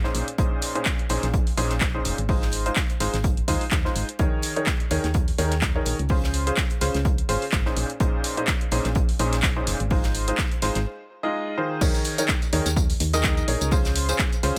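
A clear, woody upright piano riff with audible action noise and a slightly detuned edge opens this euphoric, feel-good piano house excerpt at 126 BPM, riding sidechain pumping and a digital delay over a round, dark FM bass that also pumps. A punchy, tape-warm analog drum machine with crash, handclaps, hi-hat and tambourine joins alongside an up-front electronic kick, while an airy, polished studio kit plays very quiet hi-hat and snare under a lightly swung 16th-note feel. Chords cycle through Bbm11, Ab6, Eb7sus4 and Dbmaj7, with a short break at 10.9 seconds giving way to a drop at 11.8 seconds, all set in studio reverb.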